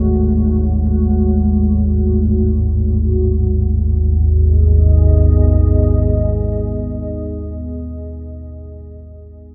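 Unsettling and desolate, this dark ambient drone in G# phrygian drifts in free time, with a deep, ominous rumbling drone in the low register sitting up front beneath a moody, warbling sawtooth pad that holds sustained chords through chorus and its own built-in reverb. The harmony moves from F#m/G# to G#m at 3.4 seconds, and the drone stops at 7.9 seconds while the pad lingers until 8.2 seconds. A vast cathedral reverb and the vintage grain of cassette tape surround this short excerpt cut from a longer piece.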